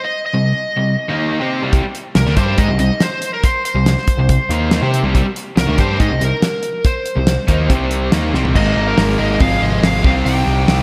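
A bright, overdriven slide guitar played with fingerpicks carries the melody over a gritty, brooding classic rock groove in C minor at 141 BPM, joined at 0.3 seconds by a cranked stack guitar with slapback echo and a background semi-hollow guitar with spring reverb on riffs, then at 1.7 seconds by a dark, round, growling bass and a dry, fat-snared 70s drum kit up front, whose fill at 8.3 seconds leads into an Absus2 and Fm/Ab turn before returning to Cm, all filling a big arena sound in this cut from a longer piece.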